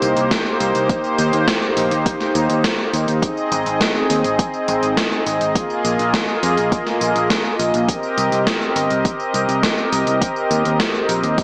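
A small-speaker sound with light reverb frames this nocturnal, cinematic synthwave excerpt, which is cut from a longer piece and moves in a straight 4/4. Up front, a brassy analog pad holds sustained chords with a soft attack, its detuned sawtooth tone wave-folded, filtered and thickened with chorus, while sidechain pumping gives it a breathing pulse. A picked electric bass, bright and growly with a punchy amped bite, carries the low end and shares that pumping. The gated 80s digital drum machine sits forward with hi-hat, snare and tambourine, its snare bathed in gated reverb and the kit pushed into overdrive, sounding re-recorded in a small room. An overdriven, layered electronic kick joins at 0.3 seconds, and the harmony moves from Cm7 through Eb6, Ab and Bb7sus4 before returning to Cm7 and Eb6.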